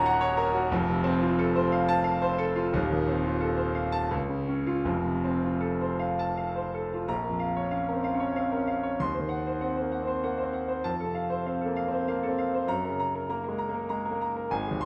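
A brilliant, up-front concert grand piano carries this passionate, bittersweet fragment of a romantic classical character piece, playing solo in a rubato 3/4 at 77-102 BPM with a deep bass reaching down to Eb1, moving through Ebm7, F and Db before a second section from 7.1 seconds turns through Bbm, Cdim/Eb and F to settle on Gb, set in a wet recital-hall reverb with a dark production.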